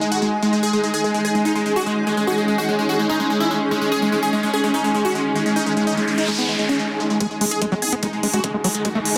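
A straight 4/4 pulse at 146 BPM drives this intense, hypnotic psychedelic trance passage, where a bright, punchy detuned supersaw stab carries the melody with phaser, delay and sidechain pumping over a tense swarming drone and a blurred granular cloud pad, a noise sweep and riser arrives at 5.8 s, and at 7.2 s a squelchy, gritty acid bass riff with 12-bit sampler grit, distortion and a filter sweep enters alongside an overdriven knocking kick and smooth up-front hi-hats, joined briefly by a very quiet, nasal vowel-sweep wobble bass, inside a dense, heavily limited mix bathed in wet digital room reverb.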